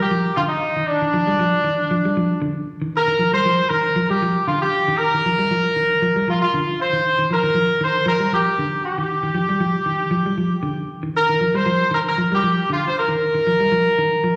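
Intense and defiant, this afrobeat excerpt moves at 117 BPM in 4/4 with a light swing on the sixteenths, resting on an Ebmaj9/D chord throughout. A bright horn section carries the melody from D4 to C5, its punchy, tight, vintage tone sitting up front with a slapback echo. Beneath it, a clean electric guitar picks arpeggios between D3 and G3, its warm tone also placed up front and touched by slapback echo. Both parts play from the opening to about 14.4 seconds. The sound is that of a live gig heard through a venue's PA, with moderate club reverb, recital hall reverb and small room ambience giving the performance a sense of space.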